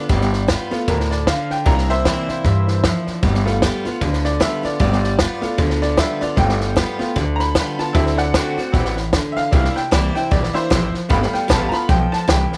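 A jangly, metallic tack piano takes a rollicking honky-tonk solo from the first second over picked, bright steel-string acoustic guitar, joined almost at once by a thumpy, woody pizzicato upright bass and a dry, compact cocktail drum kit with a high-tuned snare and punchy kick, giving this rowdy swung rockabilly cut at 152 BPM in G mixolydian a lively small-room feel as it moves through G7, C7 and D7.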